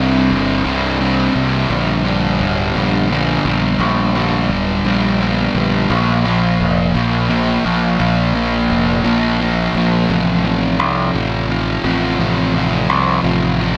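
Brooding and melancholic, this post-rock passage, cut from a longer piece, moves in a slow 6/8 as a double-tracked fuzz guitar sits up front with a distorted, picked riff that runs throughout. Beneath it, a fingered electric bass growls with bright, overdriven grit, while a lush hall reverb gives the whole a big arena scale. The harmony passes from C5 through Gm and Bb5 before settling on F/A at 10.1 seconds.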